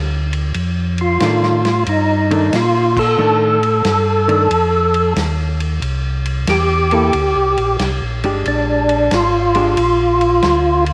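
A swung 91 BPM groove in 4/4 carries this greasy, bluesy soul jazz organ trio excerpt in F mixolydian, where a round, dark tonewheel organ bass through a slow rotary speaker starts at 0.0 s, a dry, mid-forward soul drum kit with tight kick, snare, hi-hat, ride and crash follows, and a fat, lightly overdriven percussive organ melody with chorus vibrato, slapback echo and key click enters at 1.0 s, soon joined by a clean, fingered hollow-body jazz guitar, all moving through F13, C9 and Bb6 with a band accent at 2.9 s inside a moderate echo chamber reverb.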